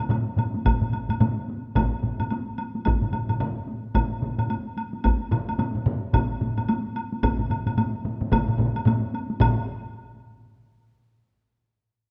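An up-front taiko ensemble struck with heavy sticks is the loudest voice in this driving, powerful fragment of a longer Japanese traditional drum piece at 110 BPM in a swung 4/4, entering at 0.7 seconds over a second heavy-stick taiko ensemble in a live room, a hard-stick ensemble in the background, distant solo taiko drums in a large room and a woody woodblock, heard through a moderate stage reverb and close, detailed microphones.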